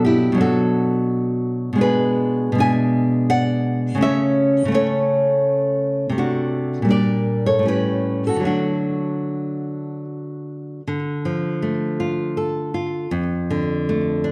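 This romantic piece for solo classical guitar, in a lilting triple metre with a rubato feel, carries a nostalgic mood. A single nylon-string guitar plays alone throughout, fingerpicked with a bright tone from fresh strings, and the occasional finger squeak keeps it close and human. The guitar sits up front, touched by a slapback echo and set in a recital hall whose lush reverb lends a dark, warm glow to the production. Its phrases move through searching, chromatic chords before settling, then at 10.9 s the harmony turns to a more shadowed minor colour that carries through to the close at 14.3 s. This short passage is cut from a longer work.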